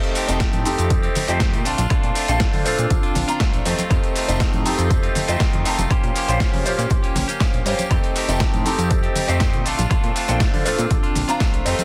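Joyful and feel-good, this short excerpt of filtered disco house moves at 120 BPM in a straight 4/4, cycling through F9, Bbmaj7, F7 and Bbm6 chords. A clear concert grand piano carries the accompaniment with a phaser and sidechain pumping, while a bright, twangy, direct-recorded clean electric guitar plays a picked riff that also pumps with sidechain compression. A dusty soul sampler-style kit adds gritty, overdriven hi-hat, shaker, a medium-tuned snare and woodblock, with tambourine and congas ringing close and dry in the background. A fat analog bass with detuned sawtooth and square tones, ring modulation and a filter sweep enters at 0.3 seconds, and a punchy, tape-warm electronic kick sits up front from 0.4 seconds. The mix has little reverb and a dense, heavily limited modern master.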